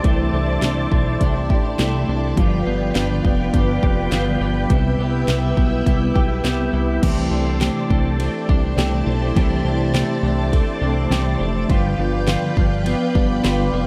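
A punchy electronic house drum kit sits up front, with a cracking snare, metallic hats, crash, ride and tambourine, driving this blissful, dreamy dream pop excerpt at 103 BPM in C major, with a fat, detuned sawtooth analog bass and its filter sweep just beneath. A twangy twelve-string electric guitar with harmonic tremolo and subtle chorus plays accompaniment, while a bright, direct-recorded clean guitar picks chorused, delayed arpeggios over mellow, organ-like ensemble string chords moving through C69, G7 and Cmaj7. The dark production places the parts in a moderate recital-hall reverb, and the drums stop at 13.6 seconds as the other parts carry on to 13.9 seconds.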